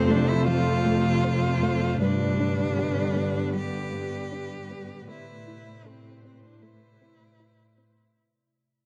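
A bright, close solo cello with vibrato carries the delay-touched melody in this brooding, futuristic cinematic fragment, set over a warbling, lo-fi tape-like pad of chorused chords, an intense chamber viola section, a lush symphonic cello section holding the bass, and soft, round, nasal pluck arpeggios, all in a wet scoring-stage reverb as the chords move from F to G to Amadd9 at 5.1 seconds beneath a fade-out.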